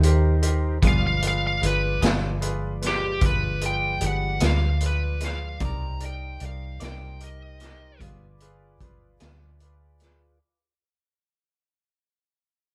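A smooth, overdriven lead guitar carries the solo from 0.9 s to 8.0 s in this soulful, smoky slow blues at 50 BPM in 12/8, cut from a longer piece and fading out across its length over Abmaj7, G7b9 and Cm9 chords. A gritty, saturated garage drum kit with a punchy kick and a round, foam-muted vintage bass sit up front, while a bright concert grand piano adds brilliant, polished accompaniment with audible action noise. Further back, a mellow tonewheel organ holds sustained chords through a slow rotary speaker, and a compressed, slightly broken-up electric guitar with tremolo enters at 0.8 s, all captured as a band playing live in one room with light reverb.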